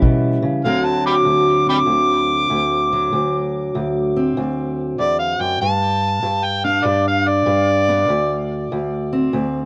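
Light reverb colours this short blues excerpt, swung at 97 BPM in D mixolydian with a swaggering, soulful mood. A dark, boxy parlour steel-string acoustic guitar, fingerpicked and up front, carries the accompaniment through D7 and G5 changes. From 0.7 seconds an amplified, overdriven harmonica takes a gritty jazz-style solo with tape echo, light vibrato, tongue slaps and scooped notes, running to 8.5 seconds.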